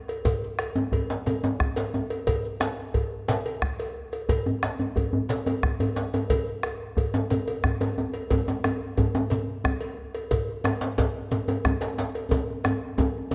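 This West African traditional drum ensemble piece has a festive, driving mood, rolling in a straight 12/8 feel and cut from a longer performance. A round, close and dry bombo sits up front, alongside a second djembe that sounds deep, compressed and saturated, played with soft hands. A metallic cowbell rings out in a more live room sound, while a grainy, mellow shekere stays in the background. A tight, cracking djembe, also played with soft hands, joins very quietly from 0.3 seconds. Drum fills break the groove at 5.8 seconds and again from 12.3 seconds to the end. The ensemble is bathed in a wet recital-hall reverb, and the top end is rolled off, giving the whole mix a dark, muted sheen.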